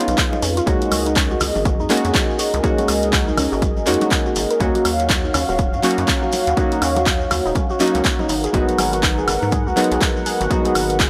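Deep house at 122 BPM in Eb minor with a 16th-note swing, this moody, late-night excerpt sets a dark, detuned analog pad with sampler grit and a deep, mellow chord stab with chorus and tape echo over Db9, Gb69, Ebm7 and Abm7 chords. A punchy analog drum machine of handclaps, hi-hat and woodblock, an up-front electronic kick, very quiet ringing congas and a grainy background shekere join a rubbery, hollow square bass and a warbling, nasal pluck arpeggio on cassette tape. The pad, stab, bass and pluck all pump with sidechain in a dry, gritty hardware recording.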